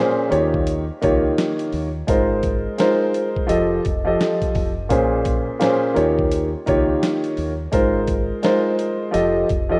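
Boom-bap hip-hop with a tough, gritty mood and a swung sixteenth-note feel, cut from a longer piece. A dark, mellow concert grand piano sits up front and carries the accompaniment from the start, its intimate, vintage tone colored by cassette tape and filtering, with audible action noise in the keys. At 0.3 seconds a round, punchy fingered electric bass and a sampler-style drum kit join, the bass direct and amped while the compressed, pitched-down drums offer a thumpy kick, a medium-tuned snare, hi-hat and a tape-warm grit. The harmony cycles through Eb7, Ab69, F9 and Bbm7 across the loop. A moderate, lush hall reverb surrounds the rough home-demo mix.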